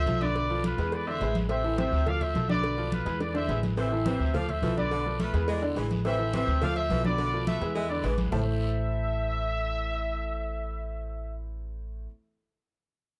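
A dark, lightly reverberant production frames this driving, danceable salsa excerpt in A harmonic minor at 211 BPM, where a punchy, vibrato-laden trumpet section leads up front over a worn, slightly detuned upright piano, a woody pizzicato upright bass, thick-skinned congas, round low-tuned cowbell and bongos and a raspy guiro, with a close-miked saxophone section adding a second line from 3.8 seconds and a drum fill at 3.2 seconds before the percussion drops out at 8.4 seconds.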